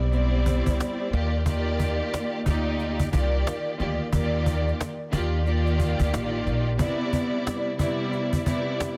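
This boom-bap hip-hop fragment, cut from a longer piece, moves at 90 BPM in 4/4 with a 60% swing on the sixteenths, and its mood is nostalgic and soulful. A bowed studio string section carries the accompaniment throughout, lush and up front with vibrato, its ensemble tone filtered at both the low and high ends. An upright bass with gut strings plays pizzicato beneath it, sounding dark, woody and thumpy, and drops out at 6.8 s. A close, dry cajon with snares keeps the beat from 0.1 s, played with soft hands for a snappy acoustic pulse. The harmony shifts from Cmaj9 to Ebmaj9 and returns to Cmaj9 as the bass falls away, with the tuning set to A4 = 442 Hz. Studio reverb, a dense and heavily limited modern master, and a layer of vinyl crackle shape the overall sound.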